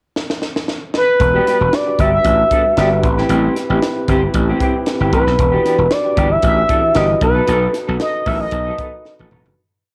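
Nocturnal and slick, this short, polished 1980s jazz-funk pop piece opens with a crisp fusion drum fill over a pickup bar, then a growly, overdriven slap bass arrives up front at 1.2 seconds with an agile syncopated line. A smooth sawtooth synth lead carries a motif-based melody of call phrases, shaped with vibrato, chorus and a filter sweep, while a dark, clean, fingered electric guitar plays sixteenth-note rhythm and a tine electric piano adds rootless syncopated chord stabs with grace notes over Em7, Am7 and B7. The home cassette sound has light reverb, a pumping small room around the high-tuned snare and punchy kick, and the piece fades out from 7.5 seconds.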